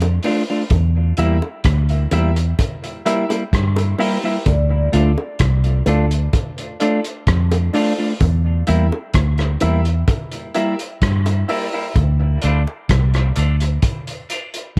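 A round, foam-muted electric bass sits up front in this hypnotic, spacious dub reggae excerpt at 64 BPM in D minor, joined by a muffled, lo-fi vintage drum kit of kick, hi-hat and rim click, tight, high-tuned bongos in the background, a dark, clean semi-hollow guitar and woody, slightly detuned upright piano stabs, while a mellow soft-mallet vibraphone rings a single D5 at 4.5 seconds as the opening break ends, with dub echo on bongos, guitar, piano and vibraphone, and a filter sweep colouring the passage from 8.2 seconds over chords moving between Dm and Edim.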